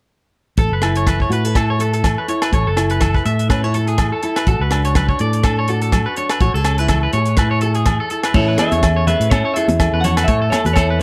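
A lightly swung 124 BPM groove in 4/4 from a tight, dry funk drum kit with bright cymbals, rim clicks and a tight kick, plus ringing, saturated agogo bells, drives this sunny, joyful highlife guitar band passage in A major, where a round, up-front fingered bass and a full-bodied fingerpicked nylon-string guitar with audible finger squeak support twangy, scooped arpeggios from a slightly broken-up electric guitar through analog delay, until at 8.3 seconds a clean, hollow-bodied semi-hollow electric guitar takes up the melody and, moments later, soft, high-tuned congas join in the background, all set in a small room.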